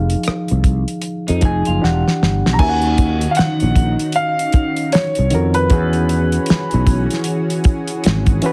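R&B and neo-soul at a sultry, smooth 77 BPM with a swung 16th-note feel, this short cut sets a gritty, overdriven reed electric piano over a growly fretless bass with analog chorus and a damped 70s drum kit with a fat snare and tight kick that plays a fill at 1.8 seconds, while a twangy, slightly broken-up electric guitar slips in briefly at 1.3 seconds, an up-front grand piano with slapback echo carries the melody from 2.5 seconds, and a lush, warbling detuned unison pad holds chords beneath, the whole mix heavily compressed into a radio-like sound within a moderate studio reverb.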